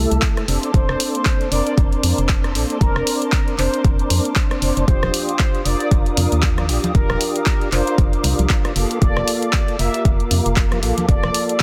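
At 0.0 seconds a soft, hollow pad with ensemble chorus and a mellow tonewheel organ playing stabs through a slow rotary speaker open this relaxed deep house excerpt, joined at once by a dark, percussive FM bass with an organ-like tone. The pad, organ and bass all pump against the sidechain, while a deep, up-front electronic kick and a kit of handclaps, hi-hat and rim click set a 116 BPM groove in 4/4 with a gentle 58% swing on the sixteenths. At 0.7 seconds a round, horn-like synth lead enters with chorus, vibrato and tape echo, holding a narrow melody between Bb4 and E5. Thick-skinned acoustic congas slip in at 5.0 seconds, sitting in the background. The harmony moves from Bbmaj9/F to Ebmaj9 and then Gm7/F, all bathed in light digital reverb within a dense, heavily limited modern master.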